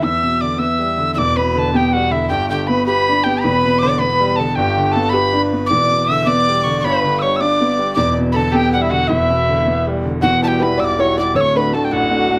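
Set in a lilting 6/8 at 106 dotted-quarter beats per minute with a straight feel, this Celtic folk excerpt in E dorian sounds dark yet lively and spirited. An airy metal tin whistle carries the melody up front, its crisp attack and breathy chiff softened by rolled-off highs, with vibrato, a slightly unsteady quality and a touch of plate reverb. Beneath it, a single bowed fiddle plays a second line with a nasal, reedy gut-string tone that is warm in character. A bright concert grand piano sits equally forward in the accompaniment, brilliant and open with deep bass and long sustain, moving between Em7 and G before shifting to Emadd9 and D. At 10.2 seconds a very quiet fingerpicked open-back banjo joins with its own twangy, plunky, percussive second line through to the end at 12.4 seconds, all in a moderate studio ambience.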